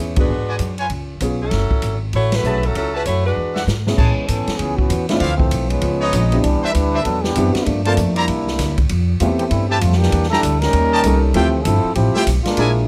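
Close, detailed microphones and very little reverb give this excerpt from a longer big band swing piece a dry, intimate sound, with a brassy, dramatic mood at a brisk 195 BPM in F# minor. A woody, growly upright bass and a short-sustained baby grand piano carry the accompaniment throughout, while a swinging drum kit with a punchy kick, medium-tuned snare, hi-hat, ride and crash drives the 4/4 swing. A tight saxophone section with light vibrato leads the melody up front until 3.7 seconds, as a bright, present trumpet section punctuates with stabs and the full band hits sharp accents. A drum fill starting at 3.4 seconds hands off at 4.0 seconds to the trombone section, which takes a warm, vibrato-laden solo for the rest of the passage. Underneath, the harmony moves through rich jazz chords such as Amaj9, Gm11 and Fmaj9#11, adding colour to the swing.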